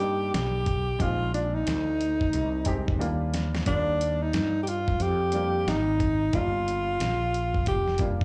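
Cool and relaxed, this jazz-hop excerpt moves at 90 BPM in a swung 4/4 in E-flat major, sounding like a live club gig heard through the venue's PA with a roomy reverb. A breathy alto saxophone carries the melody up front with vibrato, subtone and scooped notes, its jazz-style phrasing touched by a slapback echo. Beneath it, a worn, woody upright piano sits in the background with short, slightly detuned chords that also carry slapback, moving through rich voicings from Cm9 to Ebmaj7 and Gm7. A growly, punchy fretless electric bass holds the low end with a bright, direct tone, while a gritty sampler-style drum kit enters at 0.3 seconds with a thumpy kick, fat snare and hi-hat. A drum fill from 3.0 to 3.7 seconds marks the turn into the repeat of the opening phrase.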